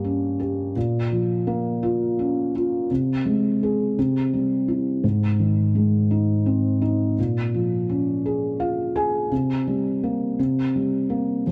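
A felt-muted upright piano plays alone from the start in this aching, melancholic pop fragment at 56 BPM in a slow 6/8, its soft, intimate tone sitting up front with thick felt and audible action noise as it moves from Gdim through Bbm, Ab/C and C to a closing C5, adding a short fill at 8.2 seconds, all bathed in a moderate echo chamber reverb within a dark production.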